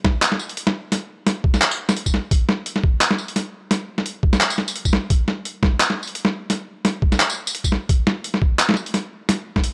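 A dry, gritty hardware recording with digital ambience carries this tense, dark drum and bass excerpt at 172 BPM, set in a half-time 4/4 feel with a 56% swing on the 16ths, where an up-front, overdriven, pitched-down, sampler-style boom bap kit of handclaps, hi-hat, high-tuned snare and tambourine runs alongside a compressed, thumpy, overdriven electronic kick, both sitting in a small room ambience for the full length of the cut.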